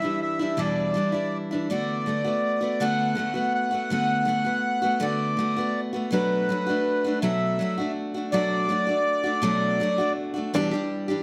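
This acoustic folk excerpt, cut from a longer piece, has a wistful, intimate mood and an unhurried lilt in 6/8. A reedy accordion with a slow beating shimmer sits up front and carries a solo line in its upper-middle register until about 10.1 seconds. Beneath it, a picked steel-string acoustic guitar plays warm, up-front accompaniment across a broad range, moving through Em7, D6 and Bm7 before returning to Em7. At 10.5 seconds a bright, twangy bluegrass banjo, played with fingerpicks, slips in with brief percussive arpeggios on a single note, set a little further back than the other parts. The close, detailed microphones catch the intimacy of the guitar and accordion, while a moderate recital hall reverb lends the whole an airy sense of space.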